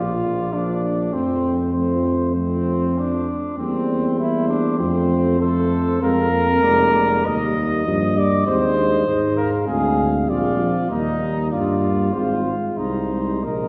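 Heard from further back in a concert hall with a wet, lingering reverb, this noble, stately brass quintet moves with a rubato feel at 98 BPM in 4/4, settling into Eb major from 6.0 s. A mellow cornet carries the melody with light vibrato, while a soft-attacked flugelhorn sits up front on the second line and the tuba, also up front, anchors the bass with a warm tone. A dark euphonium in the background and a very quiet French horn fill in the accompaniment, with all five parts playing throughout this 13.7-second passage from a longer piece.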